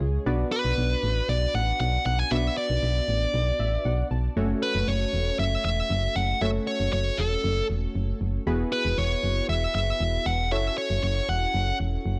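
A straight 4/4 pulse at 117 BPM drives this cool, nocturnal synth-pop excerpt in F# minor, where a punchy, round FM bass sits up front beneath detuned sawtooth analog keys with chorus and a filter sweep, which play a brief fill from 3.3 to 4.4 seconds, while a dark, picked electric lead guitar with overdrive carries the melody from 0.5 seconds over Bm, F#m, Eadd9 and F#m7 in light reverb.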